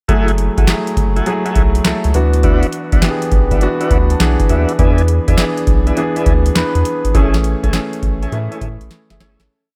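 New jack swing R&B with a punchy, confident feel, driven by a booming, hard-swung analog drum-machine beat of deep kick, crisp snare layered with handclaps and metallic hi-hats, under a round, bouncy synth-funk bass line with muted ghost notes and chromatic approach notes, syncopated drop-2 chord stabs with grace notes and a short fill at 3.6 seconds from an intimate, up-front grand piano with audible action noise, and short syncopated stabs from a smooth tonewheel organ through a slow rotary speaker, all in a dry mix that fades out from 7.1 seconds as a drum fill arrives at 8.9 seconds.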